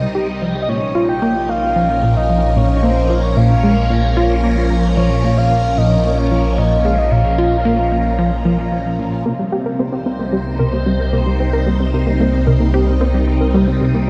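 A straight 4/4 pulse at 112 BPM drives this hypnotic, mysterious slice of ambient, sequencer-driven space music in Bb dorian, where a punchy, funky analog bass riff with gritty sampler texture and tape echo rides over a fat, saturated low bass, a swirling, bright phased string machine sustains chords moving from Cm to Bbm, a mellow, octave-layered synth lead with vibrato and tape echo carries the melody until 9.0 seconds, and a soft, nasal pluck takes up background arpeggios from 9.3 seconds, all bathed in a huge, dark ambient reverb.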